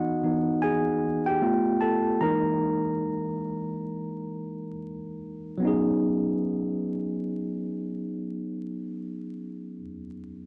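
Warm and sensual, this brief fragment of a slow R&B piece in B major drifts between 66 and 77 BPM with a swung sixteenth-note feel, slowing down through its first 5.6 seconds. A clean tine electric piano, heard through its built-in speakers and placed up front with cassette tape coloring and plate reverb, carries the accompaniment from E3 to A#5, playing solo through the first 5.6 seconds as it moves through Emaj9, G9 and Emaj7#11 before settling on B69 at 5.6 seconds. A short, damp booth ambience, the grain of a home cassette recording and a layer of vinyl crackle give the sound an intimate, lived-in character.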